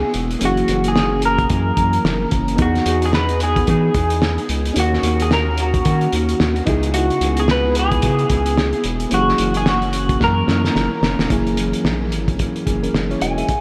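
Sunny and nostalgic, this swung indie and bedroom pop excerpt floats in a dreamy mix soaked in huge ambient reverb, moving through jazzy seventh chords from F#7 to Emaj7, D#m7, C#m7 and back. Up front, a dark, slightly broken-up electric guitar through a small old amp carries the fingered melody with analog chorus and delay, while a mellow, clean second guitar adds chorused accompaniment with a warbly pitch drift, and a reedy, worn, slightly out-of-tune electric piano sits in the background with a cassette-tape tint. A round, deep analog bass with a wave-folded square-and-sine tone anchors the low end beside a cloth-damped, thuddy drum kit with a fat snare and muffled, gritty character, whose fill from 10.2 to 11.3 seconds leads into a new section.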